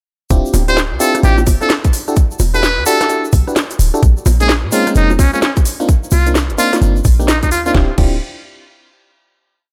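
A swung two-step garage groove skips along on a tight, up-front electronic kick, a cracking snare, crisp hats, rim clicks, bongos and crash, with a grainy egg shaker tucked in the background and a punchy, saturated 808-style bass riff underneath. A glassy FM electric piano drives one chord shape moved in parallel through chorus and tape echo, while a buzzy metal-muted trumpet enters at 0.7 seconds with short, jazz-style phrases, vibrato and echo. The bouncy, late-night drop settles onto a final chord at 7.7 seconds, with the whole mix nearly dry.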